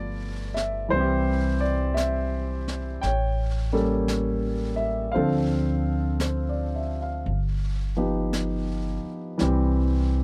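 A natural, up-front grand piano accompanies this short, intimate late-night jazz ballad excerpt at a slow 57 BPM in swung 4/4 and C major, moving through G9, C, A7b9, Dm7 and Gaug7 back to C over a woody, thumpy pizzicato upright bass on gut strings, while an airy, polished brush kit with a high-tuned snare and hi-hat joins at 0.6 seconds, all in a dry, close 1970s-style studio sound with light reverb.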